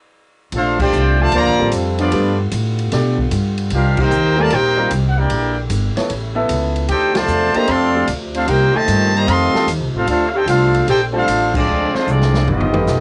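Swinging in 4/4 at 151 BPM, this energetic big band excerpt in Bb major opens after a half-second of silence, with band accents punching at 0.7, 3.9 and 7.1 seconds over a woody, growly pizzicato upright bass and a drum kit with a boomy kick and crash, ride, hi-hat, snare and toms. A bright, roomy trumpet section carries the melody with light vibrato, a close-miked trombone section plays a second line, a very quiet, mellow saxophone section holds sustained chords, and from 1.6 seconds an intimate baby grand piano with audible action noise adds accompaniment. Moving through Bbmaj9, G7, Cm7 and Dm7 changes, the brassy passage ends with a drum fill across the closing Dm7b5 and G7b13 changes, all in a small booth with a dull cassette home-recording sound.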